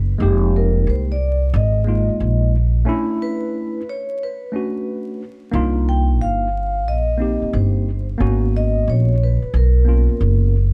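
An up-front upright bass, plucked pizzicato on steel strings, anchors this smoky, cool hip hop excerpt with a woody, dark tone at 90 BPM in 4/4 and a swung sixteenth-note feel. A vibraphone played with soft mallets carries the melody, its metallic, ringing, airy sound shimmering with a slow motor vibrato. Beneath it, a worn, slightly out-of-tune tine electric piano adds clean, direct accompaniment. The harmony moves through minor eleventh chords, from Fm11 to Bm11 at a break that runs from 2.9 to 5.5 seconds, then on to Cm11 and Abm11. Small room ambience and a layer of vinyl crackle surround the playing in this short passage taken from a longer piece.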